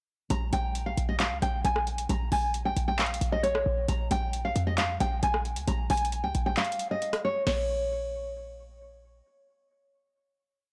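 Starting at 0.3 seconds, a dark, fingerpicked nylon-string guitar loops a classical-style melody over a booming analog drum machine with crisp snare, metallic hats and fast hi-hat rolls, and punchy 808-style sub-bass with pitch slides, making a menacing, hard-hitting half-time trap piece at 134 BPM in Bb dorian. The blown-out, overdriven recording carries light reverb, the kick drops out at 6.6 seconds, and the track settles on a final Bbm chord at 7.5 seconds.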